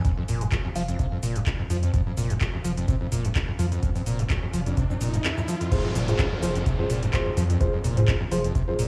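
Hypnotic and gritty, this short acid house passage, cut from a longer piece, rides a swung 4/4 groove built on an overdriven acid bass riff that sits up front, squelchy and resonant, its distorted sawtooth tone sweeping through the filter and roughened by tube saturation, analog chorus, 12-bit sampler grit and dub echo. Beneath it, a booming analog drum machine supplies metallic hats, handclaps, shaker, toms and crash cymbal, while a deep, tape-warm electronic kick anchors the pulse, both re-recorded in a large room. A round, dark analog bass enters at 0.3 seconds, its sustained low tone pumping with sidechain compression. A glassy, warbling FM bell flickers briefly in the background on a single high note, and a riser builds from 3.3 seconds as the kick drops out just before the drop. At 5.7 seconds the passage lands on an F minor chord, where a mellow, vintage concert grand piano adds stabs trailed by dub echo, all set in a light small-room ambience.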